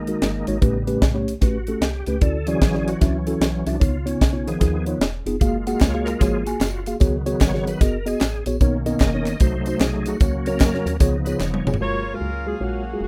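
Uptempo gospel at 150 BPM in F# major, jubilant and uplifting, with a reedy, key-clicking tonewheel organ soloing through a fast rotary speaker over a woody FM bass, mellow tine electric piano and a crisp, punchy fusion drum kit whose fill at 11.4 seconds hands off to a breathy alto saxophone and a tight, up-front saxophone section at 11.8 seconds, while tambourine and handclaps sit in the background from 5.4 seconds in this rough home demo with light reverb.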